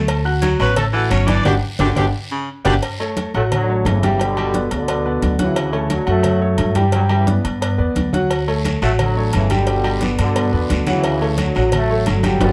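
A brisk, straight 4/4 salsa groove at 175 BPM in D major sets a sunny, joyful mood in this short passage cut from a longer piece, with a woody, growly pizzicato upright bass sitting up front beside a present grand piano with long sustain, both running the full length. Bright, thin-skinned congas played with soft hands sit in the background, while a tight, high-tuned cowbell, ringing metal-shelled agogo bells and timbales with a compressed, saturated edge, and a raspy, distant guiro in a large room fill out the percussion. In the opening seconds a punchy baritone saxophone with vibrato carries a second line as a clear, smooth-topped horn section with light vibrato states the melody, capped by a band accent and a drum fill that lead into the next section at 2.8 seconds. From 3.4 seconds a mellow, roomy trombone section takes over the melody in a tight pop-style blend, moving over chords that alternate between Gmaj7 and Dmaj7. 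Moderate studio reverb gives the whole ensemble a natural sense of space.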